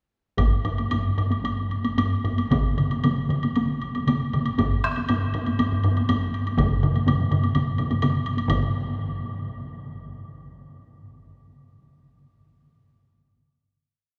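A solo taiko drum struck with heavy sticks leads this driving, powerful piece of Japanese traditional taiko drumming, its compressed, saturated phrases carried in 4/4 by a tempo that speeds up from 112 to 145 BPM. Several taiko ensemble parts surround it, some hit with hard or heavy sticks in repeating patterns or compressed, saturated taiko phrases, one joining at 2.5 seconds, while a woody woodblock ticks along beneath. A cavernous cathedral reverb fills the hall until a final hit at 8.5 seconds closes the whole piece.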